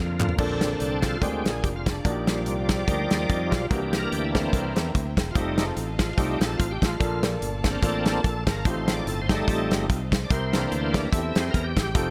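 A lightly swung 146 BPM groove in 4/4 drives this hopeful, uplifting uptempo gospel excerpt in Bb major, opening with a short drum fill from the natural, up-front studio kit with its tight kick and medium-tuned snare while organ and bass sound from the very start, before piano and strings join at 0.4 seconds. The bright tonewheel organ leads with a full, shouting solo over sustained chords, lightly overdriven through a slow rotary speaker with chorus vibrato, while a growly, direct fingered electric bass anchors the low end. A clear concert grand piano adds natural, deep-bottomed accompaniment, and a very quiet bowed string section lays smooth, focused sustained chords beneath, all in a light reverb as the harmony moves from Bbmaj7 through Ebmaj7/Bb, C7 and F7.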